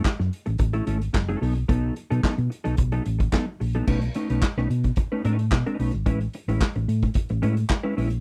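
A dry, close-sounding disco clip, glamorous and celebratory in mood, featuring a vintage acoustic drum kit with a punchy kick, dark cymbals, handclaps and a pumping small-room character, together with a round, amped hollow-body short-scale bass and a mellow, clean, compressed electric guitar treated with analog chorus, moving through F#m7 and B7, then B9 and Amaj9 from 3.9 seconds.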